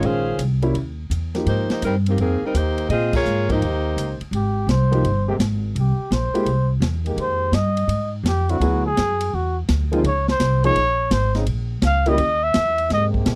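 Big band swing in Ab major at 168 BPM, joyful and brassy, opens with a dark, tight saxophone section carrying the melody over woody upright piano, pizzicato upright bass and a polished drum kit with dark cymbals and a punchy kick, then after a band accent at 3.1 seconds a breathy, whispered trumpet with scooped notes takes a solo from 4.4 seconds, backed by sustained chords from a trombone section, all in a dry, close 1970s-style studio sound.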